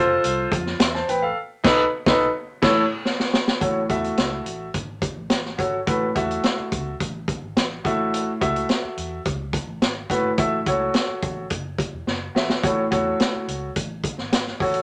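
An intimate, polished concert grand piano opens this joyful, uplifting excerpt of uptempo 1960s-style soul at 106 BPM in A major, its long sustain and audible action noise up front, alongside a round, foam-muted electric bass, with a vintage drum kit of punchy kick, high-tuned snare and dark cymbals joining at 0.2 seconds. The band hits a shared accent from 1.4 to 3.6 seconds, capped by a drum fill at 3.1 seconds that leads into a longer passage moving from A6 to F#m7, with another fill at 12.1 seconds. Moderate studio reverb surrounds the straight-feel groove.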